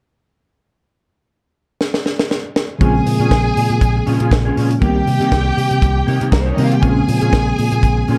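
The tight funk drum kit stands out first, up front with a high-tuned snare and tight kick, entering at 1.8 s with a fill that leads into the full groove at 2.8 s. This is a glamorous, driving disco cut in Bb dorian at 120 BPM in a straight 4/4, taken from a longer piece, with the harmony moving between Bbm7 and Cm7. From 2.8 s the picked electric bass joins, amped and run through an envelope filter, alongside a worn, slightly out-of-tune tine electric piano with a clean, direct tone. An electric guitar through a small old amp adds dark, slightly broken-up, lo-fi picked accompaniment coloured by an ensemble chorus. A lush, distant violin section carries the second line with expressive bowed vibrato, and the whole sits in a small room ambience with a dark, warm production.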